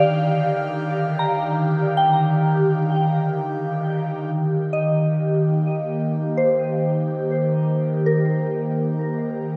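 A wet concert-hall reverb bathes this peaceful ambient excerpt in free time, where an airy, breathy pad with detuned, chorused and phased tones holds sustained chords up front, while a soft, pure FM synth bell plays mellow arpeggios through a diffuse ambient delay, both sounding from 0.0 to 9.6 s as the harmony settles from Ebmaj9 onto Eb at 4.3 s.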